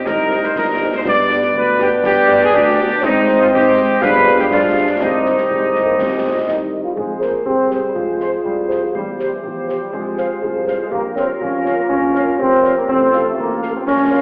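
A straight 2/4 pulse at 122 BPM drives this martial, resolute military-style wind band march in C minor, where a tight, bright trumpet section carries the melody up front over soft-edged woodwinds and a distant euphonium on second lines, background French horns with light vibrato filling in accompaniment, a mellow, smooth-topped tuba bass, and close concert snare, bass drum and dark-toned clash cymbals, before a clear, punchy trombone section joins with sustained chords at 6.5 seconds and the harmony moves to F minor at 7.0 seconds, all heard from further back in a reverberant recital hall with a thin, telephone-like sound.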